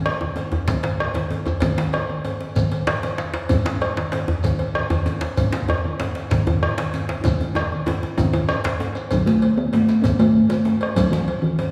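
Heard from further back in a reverberant scoring stage with a small-room ambience, this earthy, driving West African drum ensemble excerpt moves at 128 BPM in a straight 12/8, featuring a round, vintage-sounding bombo and a saturated, metallic cowbell. Behind them sit a deep djembe with metal rattles, ringing low-tuned congas and a grainy, mellow shekere, while a close, medium-tuned djembe played with hard hands sits up front until 8.8 seconds, dropping out partway through a drum fill that runs from 7.2 to 9.1 seconds. At 9.1 seconds a resonant talking drum comes forward with a melody spanning E3 to C#4.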